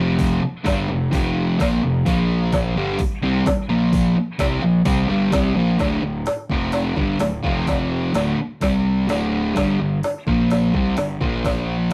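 A straight 4/4 pulse at 128 BPM drives this menacing, swaggering garage rock excerpt, with an electronic drum kit entering at 0.2 s on a soft kick, woody snare and crisp hats that sound tape-warm and close. Up front, a dark, double-tracked fuzz guitar hammers out a compressed, picked riff over power chords such as F5, Bb5, D5 and G5, shifting into a busier chord pattern at 5.8 s. Beneath it sits an overdriven fingered bass, round and punchy in the background, all captured in a rough rehearsal-room recording with moderate reverb.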